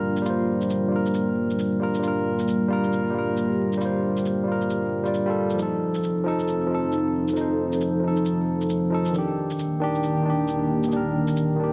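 Future garage with a nocturnal, melancholic mood, this short cut from a longer piece sets a bright, barky tine electric piano with tape echo over a deep, detuned analog pad treated with chorus, while a tape-warm electronic shaker sits low under a swung sixteenth feel, all bathed in lush hall reverb and a heavily compressed radio sound laced with vinyl crackle as the chords move from Gm7 to F7 and Ebmaj7.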